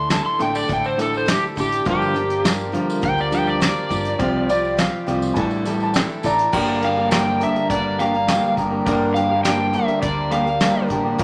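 Folk rock and heartland rock in a wistful, dusty mood, cut from a longer piece, with an up-front overdriven slide guitar soloing through the first 6.5 seconds over a boxy parlour steel-string acoustic guitar, a reedy, breathing pedal harmonium, a slightly broken-up riff from an electric guitar through a small old amp, a round, punchy fingered electric bass, a very quiet dark grand piano, a soft brush drum kit with a fat snare, and a jingly tambourine in the background, while a clear, woody upright piano adds a brief second line from 4.5 to 6.5 seconds, the whole set in a wet large studio reverb.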